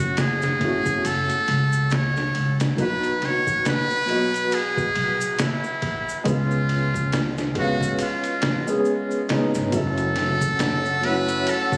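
A slow 69 BPM groove in 4/4, swung on the sixteenths, anchors this brooding, cinematic trip hop fragment cut from a longer piece. The sampler-style drum kit sounds compressed, pitched down and gritty, with a thumpy kick, a medium-tuned snare and ride cymbal set in studio reverb, while a bright, band-limited tube shaker sits quietly in the background. A woody pizzicato upright bass and a soft, intimate felt-muted upright piano, its action noise audible and its tone shimmering with tremolo, carry the F#m7, B and C#7 changes. Up front, a buzzy, thin trumpet with a metal mute plays the jazz-style solo melody through tape echo. At 10.4 seconds a warbling, nostalgic, lo-fi pad of detuned sawtooth and triangle tones drifts in with slow-attack sustained chords, chorus and its own reverb, shortly after the harmony returns to F#m7. The whole thing has the roomy, club-reverb character of a phone recording made in the room.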